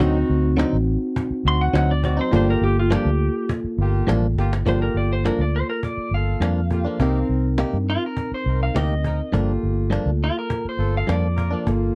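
This excerpt has the dry, close sound of a 1970s-style studio recording in a small room, giving a soulful, mournful slice of straight-eighth soul blues. A dark, round fingered electric bass with a foam-muted, punchy tone sits up front, while a woody cajon played with soft hands adds faint snare buzz and a band-limited, vintage flavour, dropping in a drum fill at 4.4 seconds. A bright, twangy clean electric guitar, recorded direct with a scooped, compressed tone, punctuates the groove with picked stabs. A tine electric piano heard through its built-in speakers fills in the accompaniment alongside sustained, smooth-topped chords from a warm jazz-style horn section. From 1.5 seconds a clean lap steel guitar, played with fingerpicks and slide, takes the melody with compressed volume swells, moving through a D7b9 and Gm7 opening before the harmony shifts to Cm7 and back to Gm7.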